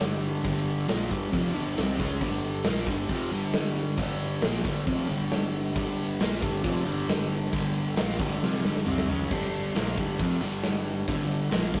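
An energetic, anthemic hard rock excerpt opens on a G5 chord, with a crunchy, double-tracked overdriven guitar riff up front over a big, punchy acoustic drum kit with bright cymbals and a growly picked bass sitting in the background, all caught in a rough rehearsal-room sound with tube saturation and light reverb, and a drum fill from 8.4 to 9.3 seconds leads into a new section that runs to 11.8 seconds.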